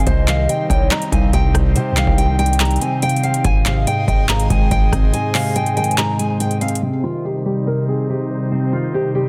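A booming analog drum machine drives this dark, brooding trap excerpt in a half-time feel, its deep kick, metallic hats, handclaps and rim clicks overdriven, dry and up front, while a punchy 808-style bass with a noise layer sits in the background until 5.1 seconds. A fingerpicked nylon-string guitar carries the melody with a full-bodied classical tone, finger squeak audible, softened by a low-pass filter and trailed by delay. Warbly lo-fi synth keys supply nostalgic, vintage accompaniment through chorus, and an airy, breathy pad holds sustained chords with a slow attack and long release. A smooth gliding portamento lead with vibrato adds a mellow second line in the background through 6.8 seconds, when the drums also drop out. The harmony moves between C minor and A-flat, and a filter sweep colours the closing stretch, all set in digital ambience with a dense, heavily limited modern master.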